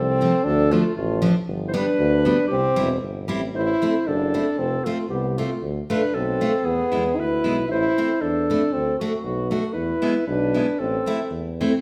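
Set in a moderate recital-hall reverb, this jolly, bouncy alpine dance-band piece cut from a longer work moves at 116 BPM in a lightly swung 2/4, with a mellow, punchy French horn carrying the melody up front with light vibrato, a clarinet playing a second line in classical style, a warm tuba with vibrato holding the bass, and a full-bodied picked dreadnought acoustic guitar joining at 0.2 s to accompany, as the music turns from C major to A minor at 3.5 s and runs through chords such as Dm, G, Am, F and E until the tuba and guitar finish at 11.7 s.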